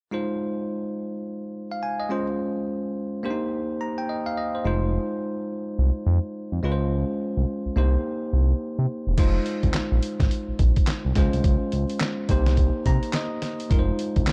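New jack swing R&B in F minor, this slick, bouncy excerpt moves at 106 BPM in 4/4 with a swung sixteenth-note feel, cycling through Fm7, Dbmaj7 and Cm7. A bell-like tine electric piano opens alone with clean, direct chords, sitting up front in the mix. At 4.7 seconds a smooth synth bass joins, its nasal, sawtooth-and-triangle tone sustained and mellow under the keys. The drums arrive at 9.2 seconds, a gritty, overdriven sampler-style kit with a thumpy kick, fat snare, hi-hat, handclaps and crash cymbal, compressed and pushed forward. Near the end, the electric piano adds a short fill before the chords return to Fm7. Digital ambience wraps the whole in a dark production.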